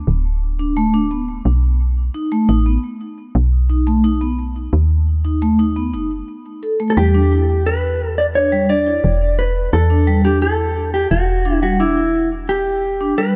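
A woody, round FM bass opens this intricate, cerebral IDM excerpt in E dorian at 87 BPM, warmed by tube saturation, and a soft-mallet vibraphone joins at 0.6 seconds with ringing arpeggios roughened by 12-bit sampler grit, low-pass filtering and tape echo. The chords move from D5 to B7 to Em7 in a straight 4/4. At 6.9 seconds a dark, clean, fingered electric guitar enters with a compressed melody carrying its own tape echo, all set in a small room with light reverb.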